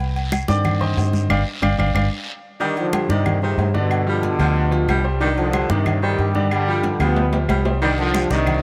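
A bright trombone section with light vibrato and analog delay carries the melody from 2.6 s in this driving, passionate salsa excerpt in C harmonic minor at 184 BPM, joined by a clear, smooth-topped baritone saxophone on a second line, after an opening led by a brilliant, woody upright piano with audible action noise, all over a dark, round, punchy muted electric bass up front, thick-skinned congas played with hard hands, ringing agogo bells and timbales, distant claves and a raspy guiro.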